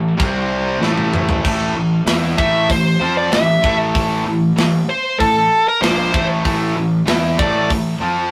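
A nasal, overdriven lead guitar with a parked wah sits up front and carries the melody from 2.4 seconds in this epic, heavy metal excerpt, over two bright, picked distorted guitars playing the riff (one tucked in the background), a growly, punchy fuzz bass and a tight, mid-forward drum kit with bright cymbals whose fill runs from 0.8 to 1.4 seconds, all caught in a rough rehearsal-room sound with saturation and a small-room reverb.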